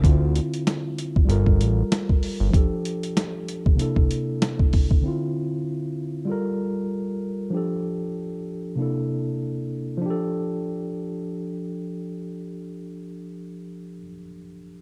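A dark, dry mix with a faint mains hum frames this soulful boom-bap hip-hop cut from a longer piece, moving at 96 BPM in F major with a swung 16th feel. Up front, a gritty, tape-warm sampler drum kit with a thumpy kick, medium-tuned snare and hi-hat drops out at 5.0 seconds, while a fat, detuned sawtooth bass with a plucky filter ends even sooner, at 2.5 seconds. A worn, slightly out-of-tune tine electric piano, filtered and heard as if through its own speakers, carries the warm cycle of Dm9, Gm9, F69 and C13 chords through to 14.8 seconds.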